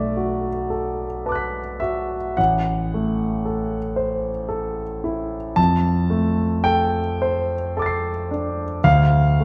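A clear concert grand piano plays alone in this brief passage of impressionist classical music, set in A minor at a slow 55 BPM in 3/4 time with a free, rubato feel. Its tone is intimate and polished, sitting up front with deep bass and long sustain. The keyboard ranges from A1 to C7, and the sounds of the instrument's action are audible beneath the notes. The harmony moves from Bm7 to Am6 at 2.4 seconds, to F69 at 5.6 seconds and settles on Dm at 8.8 seconds, giving the music a mysterious, nocturnal mood. A wet recital hall reverb and a dark production surround the piano in this short piece cut from a longer work.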